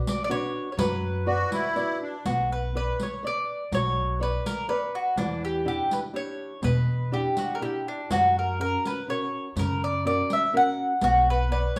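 A bright, double-strung mandolin picks the melody up front in this romantic, passionate Italian folk serenade in 3/4, over a small, fingerpicked nylon-string guitar, a woody pizzicato upright bass entering at 0.8 seconds and the hard-handed jingles of a vintage, band-limited riq, while a sweet, reedy accordion with light tremolo tuning adds a brief second line from 1.3 to 2.2 seconds, the band playing live together in a large, reverberant studio room as the harmony moves from B minor through E minor seventh to F sharp.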